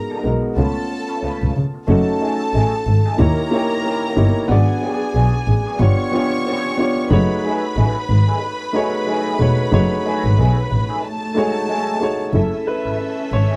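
Soft-attack sul tasto strings and a dark, mellow grand piano open this smooth, bittersweet slice of lush 1970s-style soul in F# dorian at 92 BPM with a swung 16th-note feel, joined at once by a slightly broken-up, lo-fi electric guitar riff through a small old amp with wah and an up-front, woody bowed double bass with vibrato, in a dry, close studio sound, before the piano takes a solo from 12.3 seconds.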